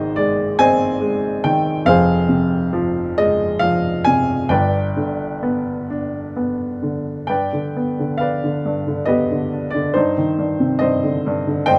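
Melancholic and dark, this short cut from a longer classical piece is a lyrical solo for upright piano in a slow 3/4 at 67 BPM, played with rubato so the beats fall unevenly. The piano sounds woody and up front, with a short sustain, reaching from F1 up to Ab5 under close, detailed microphones and light reverb. The harmony moves from Ab to Fm and G, and a new section begins at 7.3 seconds, settling on Cmadd9/G at 10.0 seconds.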